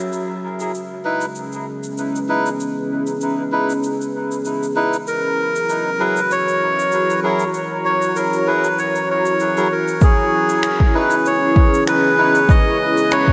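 A swung 4/4 groove at 97 BPM opens this meditative, hazy ambient dub excerpt, carried by an acoustic shaker and finger snaps with a natural hall sound. Alongside them, a deep, moody pad of detuned sawtooth and sine voices with a sub octave sustains chords from the start, its slow attack and chorus giving it a warbling, vintage darkness as the harmony moves from C#m7 to F#7 and back. A mellow, wooden-toned melodica places stabs soaked in dub echo from 1.0 seconds, and at 5.1 seconds a second, smoother melodica with a breathy, nasal edge takes up the melody in front, also trailing dub echo. At 10.0 seconds a punchy, layered electronic kick drum arrives up front, anchoring the closing stretch in C# dorian. A huge ambient reverb with a long 3.9-second tail surrounds the recording, deepening its drifting haze.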